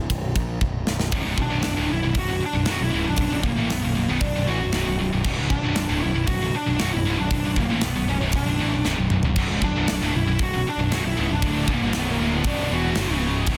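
A tight, polished metal drum kit sits up front in this dark, relentless heavy metal excerpt, its bright cymbals, medium-tuned snare and firm kick ringing through an airy room sound at a straight 116 BPM in 4/4. A fuzzy, overdriven electric bass with a round, murky tone opens alongside the drums, and a short drum fill leads into the main riff at 1.1 seconds, where the key of B minor settles on a B minor chord. There, a pair of scooped, high-gain guitars churn out the riff in the background, while a distorted lead guitar with a shadowy tone and digital delay carries the melody from 1.4 seconds. Another fill marks the point at 9.4 seconds where a very quiet, double-tracked crunchy overdriven guitar joins the riff. The small room ambience and a dense, heavily limited modern master keep the sound compact and forceful.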